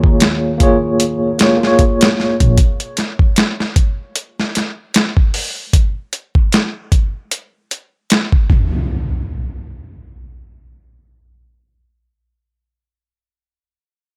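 A worn, slightly out-of-tune tine electric piano opens this dark, cinematic trip hop excerpt on a Bbm7 chord, its tremolo, tape echo and 12-bit sampler grit moving through a filter sweep, with woody pizzicato upright bass beneath and electronic downlifter-and-impact effects. Piano and bass stop at 2.6 s, leaving the gritty, overdriven sampler-style drum kit up front with its thumpy kick, medium-tuned snare and swung hi-hat until 8.7 s. The electronic effects return from 8.5 s, closing the cut in a dry space.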